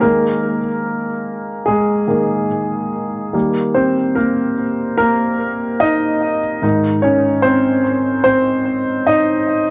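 In a straight, unhurried 4/4, this brief pop fragment is carried entirely by a solo concert grand piano, and its mood is emotional and tender. The piano sits up front and intimate, with deep bass and a natural tone, and the mechanical action noise stays audible. The chords move from Ebsus4 to Eb at 3.3 seconds and then to Ab at 6.6 seconds, so the opening phrase gives way to a second, longer passage. The piano carries a cassette tape character and an analog delay, and a moderate small-room reverb adds a close, homespun air. The whole piece has the feel of a home recording captured on cassette and cut from a longer performance.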